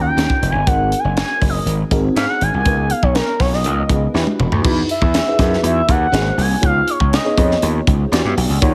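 Polished 1980s jazz-funk pop at 121 BPM with a nocturnal, urban mood, where a smooth, warbling sawtooth synth lead glides through a portamento solo over the first 4.6 seconds, an FM electric piano layered with a soft pad turns dreamy through phaser and lush chorus, a gritty, overdriven slap bass sits punchy and up front, and a tight funk kit with a high-tuned snare and gated reverb enters at 0.2 seconds and drops a fill just before the shift at 4.6 seconds into jazzy chords like Emaj7 and Ab9.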